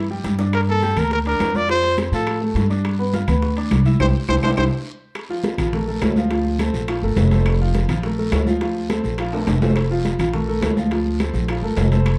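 A clear, punchy trumpet with vibrato sings the melody of this joyful, sunny salsa fragment from 0.5 to 4.6 seconds over a brilliant grand piano, a woody pizzicato upright bass up front, ringing metal-shell timbales, high-tuned congas and tight bongos in the background, a raspy guiro and very quiet claves, with drum fills and a band accent punctuating the dark, warm mix.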